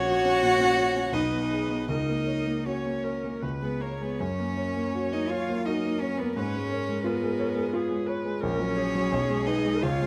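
Swaying in a rubato 3/4 at 76-89 BPM, this serene, lyrical excerpt from a slow romantic piano-quartet movement in F# major sets a smooth, vibrato-rich violin melody over a soft-edged, sul tasto cello second line with an airy bow, a focused viola accompaniment, and a clear, slightly worn concert grand piano that sits up front with deep bass and short sustain, all captured by close, detailed microphones in a recital hall with moderate reverb.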